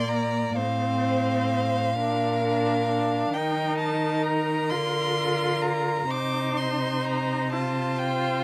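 A slow, solemn and melancholic string-quartet movement in 6/8 at 43 BPM with rubato, where all four bowed players sound together from the start, a close, warm first violin singing the melody high above a focused second violin line, a distant viola accompaniment gliding with portamento, and an up-front cello bass, every part colored by vibrato in a light reverb, as the excerpt drifts through Bb, F/A, Eb5 and Cm chords over 8.4 seconds.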